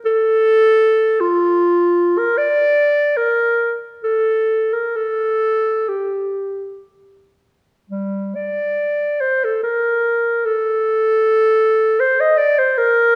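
Lonely and mournful, this short classical excerpt for unaccompanied clarinet unfolds freely in 3/4 with expressive rubato between 52 and 79 BPM, the mellow solo clarinet sitting up front and ranging from G3 to Eb5 within the moderate reverb of a scoring stage.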